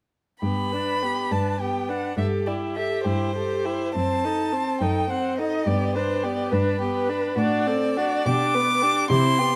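The lead violin sits up front with an expressive, vibrato-rich melody between B4 and D6, its soft attacks and portamento giving it a graceful quality. This quick classical-period movement for string quartet is in G major and 6/8, moving at 69 BPM in dotted quarters with uneven beats and rubato that keep the spirited mood supple, and the tuning sits at A4 = 442 Hz. Beneath it, a second violin plays a dark, woody line from E4 to C5 up close, and the viola adds a rich, focused accompaniment between B3 and G4, both bowed with vibrato. The cello anchors the bass from F#2 to C3 with a warm, close tone that, like the lead violin, carries vibrato, soft attacks and portamento and stands at the front of the blend. All four players sound together from 0.4 to 9.6 seconds, moving through G, Am7/G and F#dim7 before returning to G and turning through D7/A to G/B. A moderate recital hall reverb of 1.8 seconds surrounds the quartet in this fragment cut from a longer piece.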